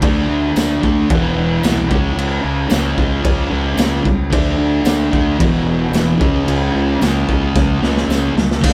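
Thick, double-tracked fuzz guitar leads this swaggering, rowdy garage rock excerpt at 112 BPM in a straight 4/4, its distorted riff riding a D5, E5, C#5 power-chord cycle over dark, round overdriven fingered bass and a gritty, punchy, saturated drum kit with a pumping small-room sound, while a jingly, distant tambourine sits in the background from 0.6 s and a drum fill arrives at 7.5 s, all captured as a band playing live in one room.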